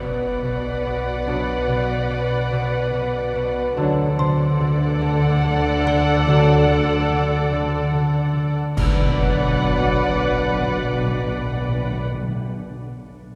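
A ringing concert harp riff sets the tone in this ominous, uneasy suspense film cue in 3/4, cut from a longer piece, playing low in the background until 8.8 seconds. Above it, two muted violin sections carry the melody and a second line with veiled, con sordino vibrato, joined by a distant viola section and a cello and double bass section that anchor the bass with dark, smooth bowing. A delicate, tinkling music box glints very quietly at the top, while a tight, dark French horn section enters at 1.3 seconds with soft sustained chords. At 8.8 seconds the music turns: the harp and music box have stopped, a huge, dark impact lands, clash cymbals and concert bass drum strike a brief accent, and round, soft-mallet timpani sound on the low B beneath the strings. The harmony moves between B minor and D major, and the whole piece sits in a wet, cathedral-like reverb that lends it a cavernous, shadowy space.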